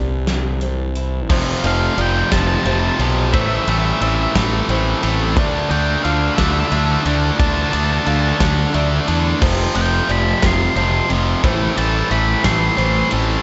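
Post-rock at a slow 59 BPM in a straight 6/8, this cathartic, cinematic passage in A minor is cut from a longer piece. A felt-muted upright piano with audible action noise and tape echo plays soft arpeggios in the background, beside a very quiet, twangy twelve-string electric guitar picking its own clean arpeggios from the first moment. A fuzz-soaked fingered bass sits up front with overdrive, and a big rock drum kit enters at 0.3 seconds, its punchy kick and medium-tuned snare set back with a rolled-off top. At 1.3 seconds a tight, bright distorted guitar riff enters up front as the harmony moves through Fadd9, Am7 and Dmadd9, and an octave-fuzz lead guitar follows at 1.7 seconds with a dark, high melody trailed by tape echo. The production is dry and dark, every part kept low in the treble, giving the full band a heavy, close weight.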